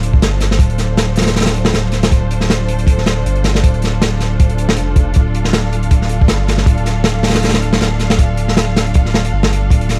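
A crunchy breakbeat kit sits up front in this atmospheric, nostalgic drum and bass excerpt with a jungle edge, its tight kick, medium-tuned snare and hi-hat swinging gently under a rolled-off top. Beneath it a deep, thick sine sub bass holds sustained notes with a fast attack, while a distant, lush bowed string section with vibrato rests on a Dm7 chord, roughened by vintage 12-bit sampler grit. The dry mix is dusted with vinyl crackle throughout.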